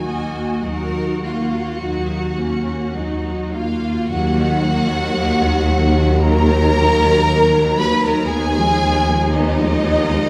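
A wet, reverberant hall surrounds this short cut from a slow, romantic movement for string orchestra, set in Eb minor with a tuning of A4 = 437 Hz. The mood is yearning and melancholic, moving at roughly 51-59 BPM in 4/4 with a flexible, rubato feel. Every section plays bowed with vibrato from start to finish: the first violins carry a lush, soft-attacked melody high in their range, while the second violins add an intense, clear counterline beneath. The violas fill in a focused, smooth-topped accompaniment, and the cellos and double basses anchor the bass, the cellos sounding even and somewhat distant and the basses expressive and full. The harmony rests on an Eb minor chord before shifting to Fm7b5 over Eb at 8.3 seconds, and the passage moves into a new section at 4.1 seconds.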